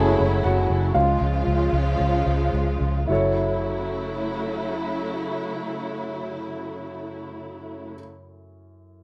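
Earnest and driving, this short pop passage in F# minor is cut from a longer piece and moves in a straight 4/4 between 105 and 122 BPM, easing its pace over the first 3.1 seconds. A dark concert grand piano carries the accompaniment through to 9.0 seconds, its mellow, intimate tone marked by audible action noise and deep bass, set in plate reverb. The piano is featured as a solo over that opening stretch. A studio string section holds sustained chords with vibrato and portamento, sounding lush and expressive under the same plate reverb. A vintage fingered electric bass, foam-muted, round and punchy, sits up front in the low register. The harmony moves from F#m7 to C# and returns to F#m7 at 3.1 seconds, all within a roomy ambience and a rough home-demo mix.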